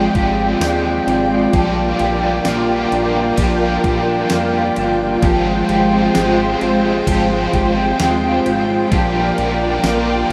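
A silky, up-front string machine opens this hazy, haunting dream pop fragment, its slow-attack chords hanging over a dark, clean, fingered electric guitar playing arpeggios through ensemble chorus and digital delay. Alongside them, a biting, double-tracked overdriven guitar adds picked accompaniment colored by tremolo and analog chorus, while a glossy, retro synth bass with a pulse-wave and sawtooth tone sits low and mellow beneath. At 0.1 seconds a gated 80s digital drum machine joins with a thumpy kick, ride cymbal, tambourine and a gated-reverb snare, its overdriven, sampler-style sound re-recorded in a large room. The harmony moves slowly between Fmadd9/Ab and Bb6, giving the piece a suspended, dreamy unease. A lush hall reverb and a rough home-demo mix wrap the whole passage, which is cut from a longer piece, in a soft blur.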